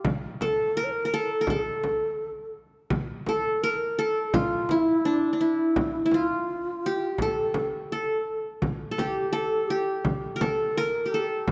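The qanun leads this Arabic maqam ensemble piece, its plectrum-plucked triple strings sounding bright-edged and sitting up front as it carries the melody between D4 and Bb4. Alongside it, a low ney plays a second line from D4 to C#5, its end-blown reed cane tone breathy, mellow and expressive, with vibrato, a soft attack and rolled-off highs. A large frame drum, struck with hard hands and recorded close, adds deep percussion that also sits up front. The three parts play together through the whole 11.5 seconds at a steady 84 BPM in a straight 4/4, tuned to A4 = 437 Hz, in a single section cut from a longer piece. A moderate concert hall reverb with a 2.2-second decay and a dark, warm production complete the sound, and the mood is longing and melancholic.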